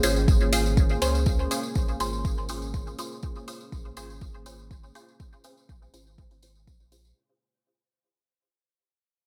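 A lightly reverberant, hazy mix sets the tone for this short cut from a longer dub techno track, moving at 122 BPM in a straight 4/4 and resting on a Bbm7 chord. A deep, up-front electronic kick drum, layered and re-recorded in a small room, enters at 0.3 seconds and drives the groove, with a round sine sub bass sitting beneath it and breathing with sidechain pumping. A dark analog pad of detuned sawtooth and triangle tones with a sub octave holds moody sustained chords through chorus, while a muted, wave-folded dub chord stab with a bright filter pluck cuts through with phaser and dub echo, undergoing a filter sweep. An electronic hi-hat sits in the background alongside a close, jingly acoustic tambourine. The whole passage is a single fading section, giving it a deep, hazy character.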